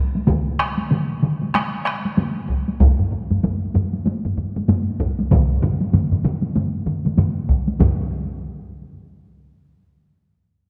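Swung sixteenths drive a 4/4 pulse that starts around 96 BPM and speeds up throughout this ceremonial, powerful Japanese traditional taiko passage, which is cut from a longer piece. Three taiko ensembles struck with heavy sticks carry the opening: one in a small-room sound, one close, dry and up front, and one up front in a small room. A fourth ensemble, struck with hard sticks, joins at 2.8 s. A new section begins at 7.8 s, and the whole is wrapped in a wet concert-hall reverb with a dark, warm production.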